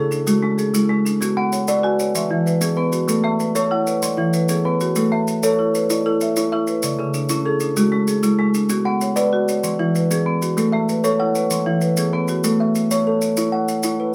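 A kalimba and a marimba played with medium mallets open together at the start, both spinning arpeggios through an interlocking mbira-style cycle in the southern African traditional style, with maracas joining at 0.1 seconds. The tempo sits at 128 BPM in a straight 12/8, and the music stays in A major, moving through C#m, Bm, E and A in a repeating loop that feels hypnotic and warm. The kalimba leads up front with a woody, hollow-box tone and a soft fingertip pluck that rings with an airy sheen, while the marimba sits close behind, also up front. The maracas add a grainy, mellow shimmer from a smaller acoustic space, set lower in the balance. At 12.4 seconds the cycle settles onto an A chord for a brief closing passage, the marimba stops at 12.8 seconds, and the kalimba and maracas carry on to the end of this fragment of a longer piece, all within a moderate studio reverb.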